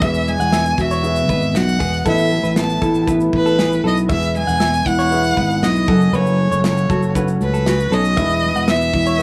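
A straight 4/4 pulse at 118 BPM drives this sunny, easy-going acoustic pop passage in E major, cut from a longer piece, with a modern studio drum kit laying down a punchy kick, a medium-tuned snare and shaker in an airy, polished small-room sound. Up front, a single bowed violin carries the melody between B4 and A5 with a clear, focused tone and vibrato, heard close. A fingerpicked nylon-string guitar supplies deep classical accompaniment with audible finger squeak, while a fretless electric bass sustains low notes down to E1 with a growly, direct-and-amped character. In the background, a woody upright piano with audible action noise adds intimate accompaniment, and a clean, compressed electric guitar, recorded direct and picked, plays arpeggios. The harmony moves from Eadd9 to Asus2, back to Eadd9, then to F#m at 5.9 seconds before returning to Eadd9 at 8.2 seconds, with the whole band playing together from 0.0 to 9.2 seconds in a dry space.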